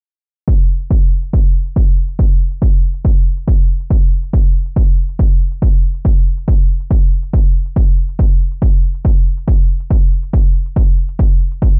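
Relentless and driving, this is a piece of peak-time techno in straight 4/4, cut from a longer track. A punchy, layered electronic kick drum sits up front from 0.5 seconds to 11.7 seconds, with a small-room character from being re-recorded in a small space. Beneath it, an electronic hi-hat with a dry, analog, overdriven edge stays far back in the mix, shaped by sidechain pumping and a low-pass filter. A filter sweep runs across the drums for the whole span, adding a sense of movement to the steady pulse. The production is dark and warm, set in a digital ambience and softened by a low-pass filter.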